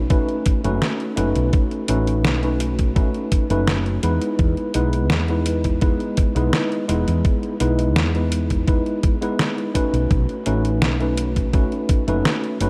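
A straight 4/4 pulse at 84 BPM comes from a thumpy, tape-warm electronic kick and a detuned 8-bit drum machine whose hi-hat and medium-tuned snare carry gated reverb, both sitting up front in this nostalgic, faded vaporwave fragment in E major. Underneath, a woody fretless electric bass adds a dark, growly low end with tube saturation. A worn, slightly out-of-tune tine electric piano, lightly overdriven through built-in speakers with analog chorus and delay, voices the chords from B9 to Emaj7 at 4.0 seconds and back to B9 at 10.1 seconds in a fairly dry space.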